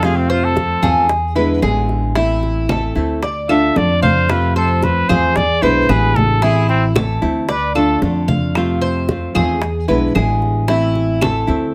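Sultry and warm, this cut from a longer Cuban son and guajira piece moves at 113 BPM in a straight 4/4 in A harmonic minor. A breathy, whispered trumpet with vibrato, a soft attack and a vintage tone leads up front until 8.0 s, over bright fingerpicked nylon-string guitar and a dark, growly pizzicato upright bass cycling through F, E7, Am and Dm. The metallic double strings of the Cuban tres add arpeggios, while tight high-tuned bongos, saturated low-tuned congas and woody claves (entering at 2.7 s) sit in the background of a close, detailed mix with light reverb.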